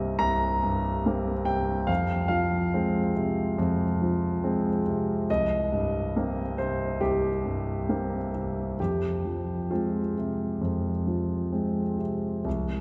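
Neoclassical minimalist piano in a rubato 4/4, this short excerpt cut from a longer piece carries an intimate, melancholic mood. A single concert grand plays solo from start to finish, spanning a range from deep bass up into its upper register, with a smooth, vintage character and the mechanical noise of its action audible. The instrument sits up front, yet it is bathed in a wet church reverb whose long decay fills the space of a church or concert hall. The harmony moves slowly between minor chords, settling on Fm at 1.9 seconds and returning to it at 8.8 seconds. The overall level is quiet, leaving room for the lingering resonance to shape the feeling of the passage.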